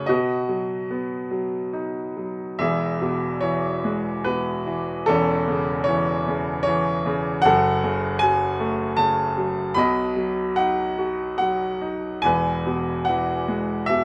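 Calm and warm, this lyrical classical solo for bright grand piano moves in a gently flexible three-four at about 69-78 BPM in E major, tuned to A4 = 445 Hz, its brilliant, up-front tone spanning E1 to B5 under light reverb as the harmony passes from B through E, A/E, F#madd9 and B back to E in this short cut from a longer piece.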